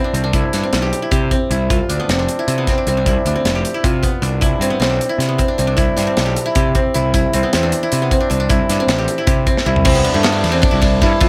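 A plectrum-plucked qanun opens this short cut from a longer math rock and midwest emo piece, its triple strings ringing with a bright-edged tone as it plays arpeggios between A3 and G4 from the very start. The tempo is a brisk 309 BPM counted in eighths, in a straight 7/8 that keeps the mood intricate and sunny in C major. Beneath it, a dark, round fuzz bass, overdriven and picked, holds the low end from F1 to C3. An acoustic studio drum kit with a high-tuned snare, punchy kick and rolled-off top uses kick, snare, hi-hat, toms, ride and crash. The harmony moves from C through G7, Cmaj7, Cmaj9 and C6, and a drum fill at 9.6 seconds leads into a new section at 9.9 seconds that settles on Cmaj9. All three parts sit up front in a studio room with a light reverb.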